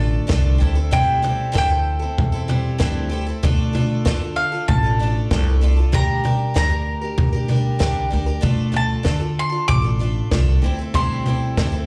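A round, double-strung mandolin carries the yearning melody high over this stirring indie folk excerpt in D minor at 96 BPM, its picked notes touched with slapback echo as the harmony moves between Dm, Am7/D and Gm/D over a low D. A very quiet, full-bodied fingerpicked steel-string guitar sounds only until 0.9 s, while a bright, boxy parlour twelve-string with shimmering octave doubling and its own slapback echo is picked beneath. A dark, thumpy gut-strung upright bass and a dry cocktail kit with a punchy kick and high-tuned snare, entering at 0.3 s, anchor the building arrangement in a live club sound with little reverb.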